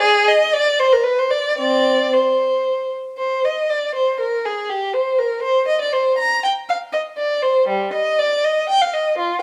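A single bowed violin carries this grave, introspective baroque-style suite movement alone, its warm tone shaded with vibrato and portamento. It plays in C minor and 3/4 time at roughly 110-124 BPM, with a rubato feel that gives the line an expressive quality, and it is tuned to A4 = 441 Hz. The violin moves between G3 and Bb5, sitting up front in the mix while keeping a slightly distant character. A moderate stone-room reverb, with a 1.2-second decay, adds a sense of space around the lone player. This brief portion of a longer piece opens with one idea, then shifts to a contrasting passage at 3.2 s that runs until 9.4 s.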